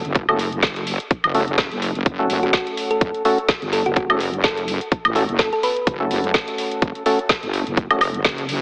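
Bass house at 126 BPM in F# phrygian with a 55% swing on the 16ths, bouncy and aggressive, built on a heavy, saturated sawtooth wobble bass with chorus and sidechain pumping under a tight, tape-tinged electronic kick and a garage kit of woody snare, metallic hats and woodblock, while a hollow, percussive organ stab with dub echo pumps over the F#m chord and a round, tine-like thumb-piano-like synth pluck carries the melody from 2.4 to 6.3 seconds, all bathed in a lush hall reverb and squeezed into a heavily compressed AM-radio sound in this short cut from a longer piece.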